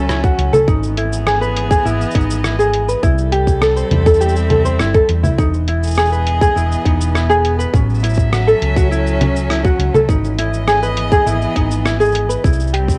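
A mellow, fingerpicked ukulele sits up front, its light arpeggios coloured by cassette tape, tape echo and plate reverb, while a dark, round hollow-body electric bass anchors the low end in this delicate, pastoral folktronica excerpt at 102 BPM in E major. A bright, intense, bowed string quartet with vibrato holds sustained chords through plate reverb. A muffled, pitched-down sampler-style kit of congas, hi-hat, rim click and shaker enters at 0.1 seconds, followed at 0.2 seconds by a tight electronic kick re-recorded in a large room. The harmony drifts through A6, Emaj7/G# and C6 with a homespun, small-room cassette character, landing on C at 12.4 seconds.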